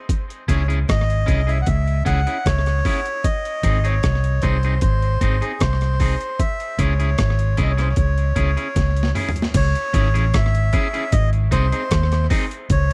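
A dry, close 1970s-style studio sound frames this meditative, hypnotic roots reggae excerpt at 76 BPM in C# harmonic minor, where a gritty, overdriven boom bap sampler-style drum kit with a thumpy kick and high-tuned snare starts at 0.1 s, a round, foam-muted fingered electric bass sits up front, a twangy guitar at the edge of break-up carries spring reverb and dub echo, and a reedy, nasal melodica with dub echo leads over C#m and G# until a drum fill at 8.8 s ushers in a new section.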